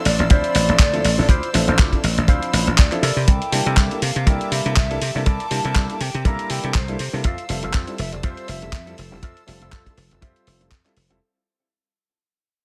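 A distant, very quiet chamber violin section holds clear, focused chords from the start of this sensual, sleek nu-disco excerpt at 121 BPM, with a light 16th-note swing, moving through Dm9, C13 and Fmaj7. A breathy, hollow jazz flute carries the melody through dub echo and 12-bit sampler grit, over a punchy, up-front thumbed slap bass, a gritty, compressed soul-style drum kit with handclaps and hi-hat, and a tight, dry kick. A deep-bassed grand piano with sidechain pumping and a dark, clean envelope-filtered guitar riff with subtle chorus round out the groove as the whole piece fades out from 3.3 seconds.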